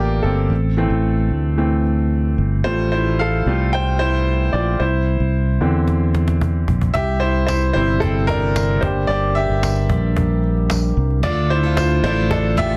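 Dramatic and earnest, this piano-driven pop passage at 112 BPM, cut from a longer piece, sets a clear, woody upright piano up front over a round, punchy fingered electric bass from the start, with a woody cajon arriving with a fill at 5.9 seconds, a soft, flute-like tonewheel organ on a slow rotary speaker sustaining chords in the background from 6.9 seconds, a jingly tambourine adding sparkle, and a full-bodied picked steel-string acoustic guitar riff entering at 11.2 seconds, all in a light small-room reverb with a dense, heavily limited modern master.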